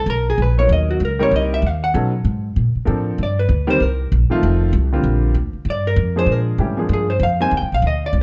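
Swinging jazz at 193 BPM in Bb major with a warm, sophisticated mood, this short excerpt features a dark, clean, picked hollow-body electric guitar soloing up front throughout, over a thumpy, woody pizzicato upright bass, while a clear, polished upright piano comps from 0.6 to 7.5 seconds through changes like Cm7, F7 and Bb69, all set in light reverb.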